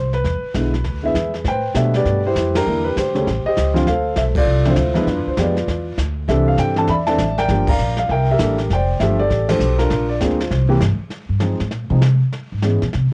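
This is a jazz piano trio in A minor, cut from a longer piece, with a late-night, moody feel, swinging at 199 BPM in 4/4. A dark, mellow upright piano carries the melody up front, its smooth, vintage tone and long sustain colored by cassette tape. Beneath it, a pizzicato upright bass with steel strings sits close and woody. The brush drum kit, also tape-tinged, offers dark cymbals, a medium-tuned snare and a boomy kick from a studio room. The band hits several shared accents as the harmony moves through chords such as Am11, A7alt, Dm9 and F69, and at 11.1 seconds the bass takes a short solo over Fm7 and Dbm7. The whole take has a dry, home-recorded cassette character.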